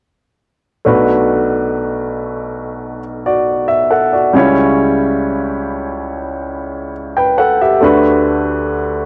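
Melancholic and heartbroken, this short pop excerpt in B minor moves at a slow 69 BPM in straight 4/4, cut from a longer piece. A baby grand piano plays accompaniment from 0.8 to 9.1 seconds, spanning B1 to G5 with a clear, polished, up-front tone as the harmony passes from Bm7 through C#dim to Bm7/D. The home cassette recording places it in a moderate booth ambience.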